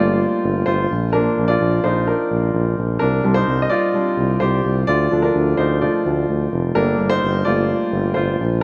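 A clear baby grand piano leads this short clip from a longer piece of piano-driven pop, sounding present and polished as it carries the accompaniment from 0.0 to 8.6 seconds. The mood is earnest and bittersweet, set in a straight 4/4 feel and tuned slightly below standard pitch. Beneath it, a tuba holds down the bass for the full length, its tone punchy with a smooth top and a touch of vibrato, and both parts sit up front in the mix. The harmony moves from Gmadd9 through Bb, Csus2 and Dm before returning to Gmadd9. Light reverb and a dark, warm production round out the short passage.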